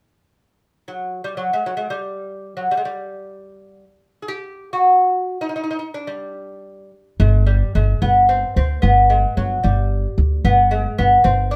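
A bright, delicate lute opens at 0.9 s in free time, its fingerpicked double gut strings, some doubled at the octave, spinning a stately melody in G dastgah chahargah with a plate-reverb sheen, up front in this excerpt from a Persian modal ensemble piece tuned to A4 = 437 Hz. At 7.2 s a pizzicato upright bass joins with woody, growly, thumpy steel-string notes that lend the close a warm footing, and both parts play on until 11.6 s in a lightly reverberant space.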